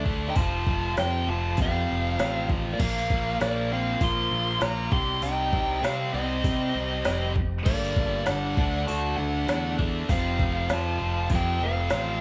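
Hard rock at 99 BPM with a menacing, aggressive edge, this 12-second cut from a longer piece has a dark, smooth overdriven lead guitar carrying the melody over a fuzzy octave-fuzz second line, two bright picked rhythm guitars (one overdriven, one high-gain) grinding out the riff in the background, a growly, punchy bass and a tape-warm electronic kit with woody snare and crisp hats up front, and a very quiet, gritty tonewheel organ with slow rotary sustaining chords beneath, all moving from F through Bb5, Cm, Gm and D back to F with the feel of a band playing live in one room.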